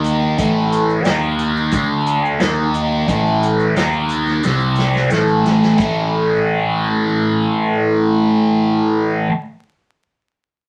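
Psychedelic rock at 89 BPM in a straight 4/4, this short excerpt from a longer piece has a hypnotic, trippy mood and a tuning set to A4 = 435 Hz. A fuzz guitar carries the riff up front, bright and double-tracked, its distorted, compressed tone colored by a phaser as it moves through chords of A5, D#5, D5 and C5. Beneath it a modern electric bass plays picked, punchy and direct, while a vintage acoustic drum kit with dark cymbals, a medium-tuned snare and a tight kick sits in a natural studio room with a rolled-off top. Very quiet maracas add a grainy, mellow shimmer close and dry in the mix. A drum fill from 4.4 to 5.8 seconds leads into a second section, where the drums and maracas drop away and the guitar and bass carry on briefly. Wet studio reverb and a layer of vinyl crackle give the recording its aged character.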